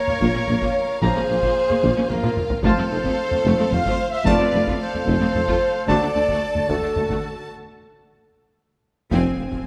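An epic orchestral film-score cue in a relentless 3/4, where a close, rich violin section carries the melody over a second violin line and an airy flute, mellow French horns hold sustained chords that dominate the blend, trombones and a warm trumpet add chords and stabs between 1.0 and 6.1 seconds, distant violas add accompaniment while lush cellos, double basses and a tuba fill the low end beneath heavy-stick taiko drums with a fill at 2.2 seconds, and after a break from 7.5 seconds the band accents together with a huge, dark impact at 9.1 seconds in a moderate scoring-stage reverb.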